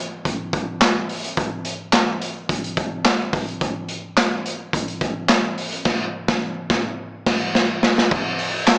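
Energetic and gritty, this short funk excerpt at 107 BPM in a straight 4/4 features a raw garage drum kit from 0.3 to 8.8 seconds, its boomy kick, medium-tuned snare, hi-hat, handclaps and dark crash cymbal sitting up front with a saturated, pumping small-room character and rolled-off top, framed by moderate studio reverb and a small-speaker sound, with a band accent arriving at 5.9 seconds and a drum fill from 7.0 to 8.1 seconds.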